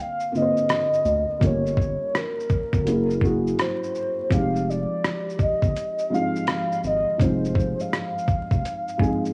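A warbling, detuned lead with chorus and analog delay carries a nostalgic melody over a felt-muted upright piano with audible action noise, a gritty, pitched-down boom bap kit with a thumpy kick, and a round analog bass entering at 1.1 seconds, in this melancholic, hazy lo-fi hip hop excerpt at 83 BPM with swung sixteenths, moving through Bbmaj9, Gm7b5, Gb9 and Fm7 under worn cassette tape, vinyl crackle and small room ambience before a piano fill at 8.6 seconds.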